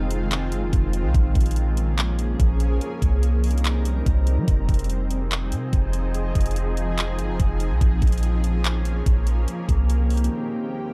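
Ethereal and melancholic, this atmospheric cloud-rap piece in F minor moves at 144 BPM in 4/4 with a half-time feel, a short cut from a longer track. A granular cloud pad holds sustained chords throughout, its blurred, evolving tone with slow attack and long release cycling through Fm7, Bbm7 and Cm7 inside its own reverb. Beneath it, a soft 808-style bass sits up front with a deep, round sine tone, fast attack and decaying notes. A trap drum kit enters at 0.1 s with a knocking kick, bright hi-hats and handclaps, carrying a produced, tape-tinged character close to the listener. An airy, breathy wind-like noise texture drifts in the background with its own reverb, and the drums and bass drop out at 10.3 s for a brief break while the pad and texture carry on to 10.9 s within a dark, warm, fairly dry mix.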